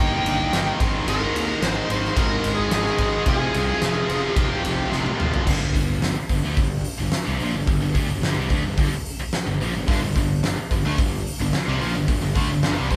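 A straight, driving 4/4 pulse from a huge arena drum kit, with its fat snare and punchy kick up front in a big natural room, powers this menacing hard rock excerpt, played as a band live in one room. A fuzzy, round electric bass sits under three bright, distorted riff guitars in the background, two of them high-gain and one of those double-tracked and scooped, while a bluesy overdriven lead guitar with tape echo carries a warm melody until 4.9 s. A drum fill then leads into a new section at 5.5 s, where the tight distorted guitar drops out before returning at 9.9 s.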